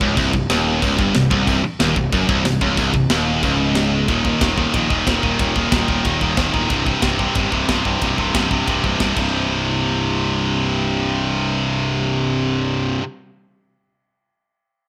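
Epic and aggressive, this heavy metal passage, cut from a longer piece, sets a high-gain distorted guitar and a tight distorted guitar up front on low picked riffs over a growly, fuzz-laden picked electric bass, while a tight acoustic metal drum kit with bright cymbals and a high-tuned snare drives the first part before stopping at 9.2 s, all in the rough feel of a small-room home demo.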